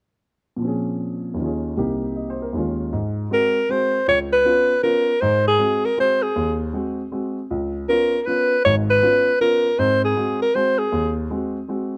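Close, detailed and nearly dry, this relaxed, playful jazz excerpt swings in 3/4 at 158 BPM in Ab mixolydian, with a warm baby grand piano accompanying from 0.6 seconds before a breathy alto saxophone, carrying light vibrato and a smooth top, takes the solo melody up front at 3.3 seconds over chords that move from Bbm9 and Eb9sus4 into alternating Ab7 and Db7.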